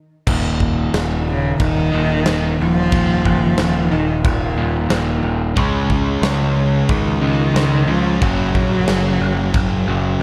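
Steeped in studio reverb, this brooding, dark quiet-loud alternative rock excerpt opens at 0.3 seconds with a crunchy overdriven guitar riff, a growling, punchy picked electric bass and a big rock drum kit with a big-room sound and a rolled-off top, before a close, bowed cello with vibrato carries the melody from 1.3 seconds and a thick fuzz guitar riff joins at 5.6 seconds.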